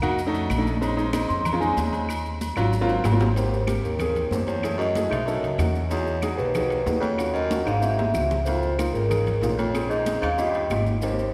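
A mellow, motor-off vibraphone carries the melody from 1.3 seconds in this sunny, lively Afro-Cuban jazz excerpt at 188 BPM, backed by an intimate grand piano with audible action noise, a growly pizzicato upright bass up front, background congas with hard hands, ringing agogo bells and timbales, woody claves and grainy maracas, while a distant, subtoned baritone saxophone with vibrato and scooped notes adds a second line from 3.4 seconds as the music settles into Ab major, all within a church-like reverb.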